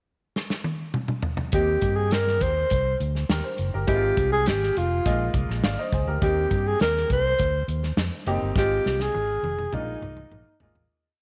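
A small room with light reverb frames this short, uplifting 1960s-style soul piece, which opens with a drum fill at 0.4 seconds before the band enters at 1.5 seconds. The acoustic drum kit sits up front, with a punchy kick and medium-tuned snare driving a backbeat groove. The fingered electric bass adds a round, tube-saturated syncopated line with slides and chromatic approach notes, and the clear, slightly worn grand piano pushes close-voiced chords dressed with grace notes and short fills. Over them the breathy alto saxophone carries an intimate, motif-based melody with vibrato and scooped notes, until a final drum fill and fade-out begin at 8.6 seconds.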